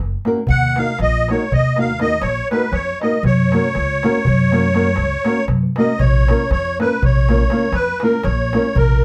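A reedy, shimmering musette accordion leads this festive, exuberant Balkan wedding-band excerpt in 11/8 from 0.5 seconds, sitting close and full over a dark, thumb-plucked nylon-string guitar, a crisp metal-shelled darbuka and a woody, growly pizzicato upright bass, all set in a small, reverberant room.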